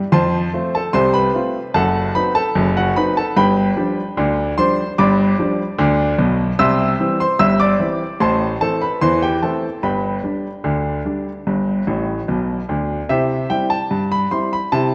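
Heard in a wet concert hall with a long, lingering reverb, this short passage cut from a longer ragtime piano piece still keeps the grand piano intimate and up front, with the audible noise of its action adding a natural, close-up texture. The mood is lively and jaunty, in a straight two-beat metre, with a solo grand piano carrying the whole passage across a broad span from deep bass up into the high treble. Its harmony moves from F through F#dim7 to G7, then settles on C before passing through Am and G. A piano fill arrives at 11.9 seconds and leads into a new section at 13.1 seconds, which lands back on C as the passage breaks off shortly after.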